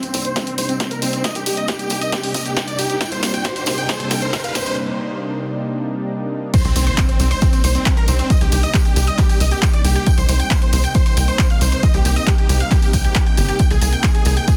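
A huge, detuned supersaw lead carries a bittersweet, euphoric uplifting trance melody in C minor at 136 BPM, emerging from a filter-swept build-up with a drum fill, background riser and short break over a lush unison pad, punchy analog drum machine, jingly tambourine, tight sequencer bass and up-front electronic kick, before the drop lands at 6.5 seconds with an impact and a round, chorused analog pluck joining in the background, all within a dense, heavily limited modern master.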